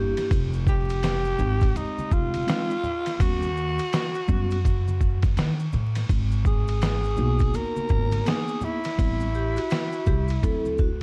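A swung 83 BPM hip hop groove in 4/4 with a jazz-hop lean sets a smooth, cool mood, as a gritty, pitched-down sampler-style drum kit with a thumpy kick and a woody pizzicato upright bass sit up front beneath a mellow tine electric piano, soft-handed maracas and congas in the background, a breathy, growling tenor saxophone lead entering at 0.7 seconds, and a ringing vibraphone that returns at 9.4 seconds, all over chords moving from Fm9 through Eb7alt and Abm7 to Am7 and D9 in a dark production dusted with vinyl crackle.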